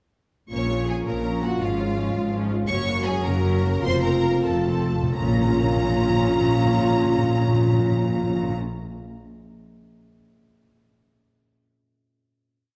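The French horn section stands out with sustained chords beneath a lush, vibrato-rich violin melody, doubled at the octave and in unison by a second, more distant violin line, in this determined, swashbuckling heroic adventure cue in Bb minor and 6/8 at 86-111 BPM. Violas rock a two-note figure over a smooth cello and double bass line on the beats, while a very quiet thumb-plucked harp rings out broken chords and close, dry timpani enter at 4.5 seconds with a fill. The theme slows from 2.2 seconds and settles on a final Bb minor chord at 5.2 seconds, bathed in the reverb of a scoring stage.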